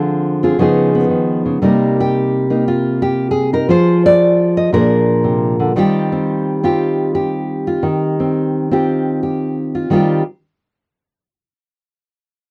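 Swinging eighths at 116 BPM in 4/4 carry this warm, relaxed solo jazz excerpt in Eb major, where a fingerpicked nylon-string guitar with fresh strings, a deep classical tone and audible finger squeak sits up front from 0.0 to 10.2 seconds, moving from Dm7b5 and Db9 through Cm7, Fm and Bb7 to settle on Eb69, all heard in a dry, close 1970s-style studio sound with light reverb.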